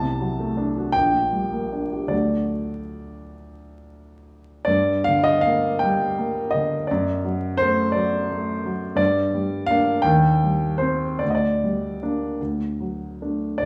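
A crackle of vinyl and small room ambience sit around a grand piano heard up front, its tone warm, set in a moderate recital-hall reverb. This short excerpt from a longer classical piece is a romantic nocturne for solo piano, melancholic and yearning in mood. It moves in a lilting compound metre with a free, rubato feel. The piano alone carries the music from 0.0 to 13.7 seconds, spanning a range from deep bass to the upper treble. The harmony leans on dominant chords resolving to the minor tonic. A second phrase begins at 4.7 seconds and turns through a plaintive minor subdominant before settling back toward the dominant.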